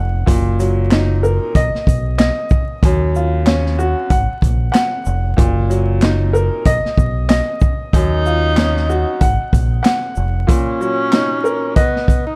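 Vinyl crackle and a small-room ambience frame this dark, reflective boom-bap hip-hop excerpt at 94 BPM with a swung 16th-note feel, cycling through Gb6, B, Ebm9 and Absus2 chords. A woody, smooth upright piano, colored by cassette tape and filtering, carries the accompaniment over a deep, round fingered electric bass and an up-front vintage acoustic kit of punchy kick, medium-tuned snare, hi-hat, shaker and handclaps, with the bass dropping out at 10.4 seconds. At 7.9 seconds a mellow, filtered tenor saxophone takes the melody in a jazz style, with vibrato and scooped notes.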